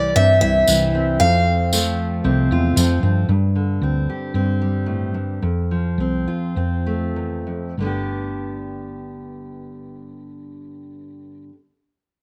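An acoustic folk piece for a small band, cut from a longer work, with a pastoral, warm mood, moving in 4/4 at a straight feel somewhere between 95 and 115 BPM in G mixolydian, tuned to A4 = 436 Hz. A boxy parlour steel-string guitar, picked and up front with slapback echo, carries the melody only for the opening 2.7 seconds. Beneath it, a dark, full-bodied dreadnought with fresh strings is fingerpicked through the whole passage, also treated with slapback echo. A round, hollow-body fretless electric bass with a woody, amped tone holds the low end, and a jingly tambourine sounds briefly and distantly, as if in a large room, from 0.7 to 2.9 seconds. The harmony moves from C to F, then to Gsus4 as the tempo slows between 3.3 and 7.8 seconds, returning to F before settling on G, all captured outdoors with little reverb.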